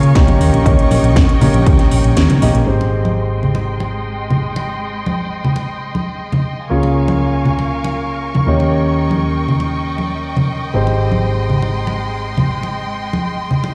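Sunny and groovy, this nu-disco cut from a longer piece moves at 119 BPM in a straight 4/4, sitting in Ab major. A punchy, up-front electronic kick and a house kit with a cracking snare and metallic hats drive the opening seconds, with the kick dropping out at 2.2 seconds on a band accent just before the groove settles into its main stretch at 2.7 seconds, where the kit falls away. Bright, hard-handed congas with a thin, vintage skin carry the rhythm from 0.3 seconds onward, over a dark, round hollow-body electric bass. A concert grand piano with audible action noise and long sustain plays accompaniment through sidechain pumping and tape echo, while a focused, bowed string section holds chords with vibrato behind a low-pass filter and the same pumping. The harmony moves from Eb7 to Abmaj7, Db6 and back, and a light small-room reverb sets the whole mix in a stone room, as if heard over a big sound system.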